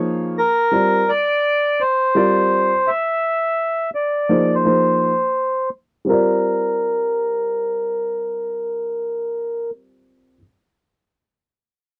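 Hip hop at 84 BPM in G minor, with a 16th-note swing that gives this short excerpt a smoky, cool feel. A smooth, vintage grand piano with short sustain plays the accompaniment up front through a low-pass filter from the start. A reedy, hollow accordion carries the melody from 0.4 seconds, also filtered, as the chords move from C5 to Abadd9 and settle on Gm7 at 6.1 seconds, where a filter sweep gives way to a new section. The close, dry 1970s-style studio sound carries light reverb.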